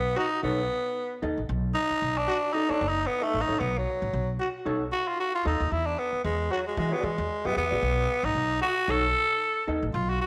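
The recording sits in a small room with a moderate echo-chamber reverb that gives the excerpt a roomy, slightly cavernous glow. It is a strutting, gritty funk groove at 114 BPM in 4/4, with a light swing on the sixteenths, in B mixolydian, moving from B7 to E9 at 5.7 seconds and back to B7 at 7.8 seconds. A growling tenor saxophone carries the melody as a solo from the opening moment to 10.3 seconds, raspy yet clear with a light vibrato and a slapback echo, placed up front. Beneath it, an acoustic upright bass plays pizzicato with a woody, steel-strung tone, also forward in the mix. A growling trombone holds a second line on a single F#4, bright and raspy with its own light vibrato, while a clean, dark hollow-body electric guitar adds fingered accompaniment until 9.9 seconds.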